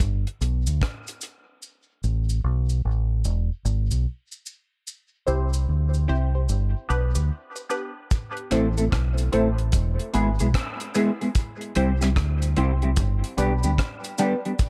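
Deep and heavy, this dub reggae excerpt moves at an unhurried swung pace, opening as a break where the drum kit plays briefly and then drops out until 8.1 seconds, leaving the round, dark fingered electric bass and a faint, vintage-sounding cabasa to carry the groove. The bass sits up front with a direct, amped tone, ranging low through the chord changes of G, Asus2, E and C. At 5.3 seconds a filtered chord stab enters, muted and nasal with a sawtooth edge, a fast attack and short decay, colored by phaser, a moving notch and dub echo. When the kit returns, its dry, tight kick, hi-hat and rim click push the second section forward over a shift to A minor. A mellow, clean electric guitar joins at 8.5 seconds, fingered and dark, washed in lush chorus and dub echo. Light reverb and studio ambience frame the whole cut, which is taken from a longer piece.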